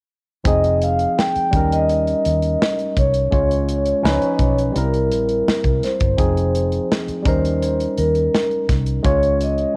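A straight 84 BPM groove in 4/4 from a punchy, up-front acoustic drum kit of kick, snare and hi-hat anchors this smooth, silky cut of lush 1970s-style soul in F minor, where a dark, round, foam-muted fingered electric bass holds the low end, a barky, lightly overdriven tine electric piano comps from 0.4 s through Fm7, Eb7, Db and C7 changes, and a mellow, ringing soft-mallet vibraphone with slow motor vibrato carries the melody, the keys and vibraphone both tinted by cassette tape in a small-room home recording taken from a longer piece.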